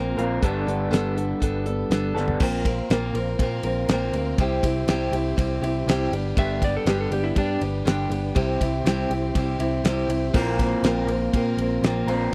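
A straight 4/4 groove from a damped 70s drum kit with a fat snare and tight kick drives this jangly, hopeful slice of folk rock and heartland rock, cut from a longer piece. Up front, a picked steel-string acoustic guitar with audible finger squeak carries the accompaniment over a growly, punchy electric bass, while a very quiet, mellow tonewheel organ holds sustained chords through a slow rotary speaker with key click. An electric guitar through a small old amp plays a slightly broken-up riff at the start, drops out just after a drum fill at 2.2 s, and returns at 10.3 s, and a compressed electric slide guitar adds a brief second line around 6.4 s, all in a dry, close 1970s-style studio sound.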